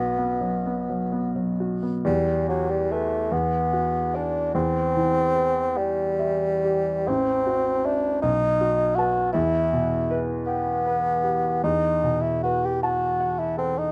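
This is a romantic classical duo for bassoon and grand piano, a short passage cut from a longer piece, with a solemn, melancholic mood. It moves in a lilting compound metre, and the pulse bends freely with rubato. The solo bassoon carries the melody up front in a mid-to-low register, its warm tone shaped by a soft attack and light vibrato in a traditional classical style. Beneath it, the grand piano accompanies across a broad span, sounding warm, worn, smooth and vintage as it sits up front alongside the soloist. After a brief opening phrase, a longer second passage begins at 2.1 seconds and moves through dark minor harmonies, including a tense half-diminished chord and a dominant seventh before returning to the home chord. The close, detailed microphones and light reverb keep both instruments intimate and clear.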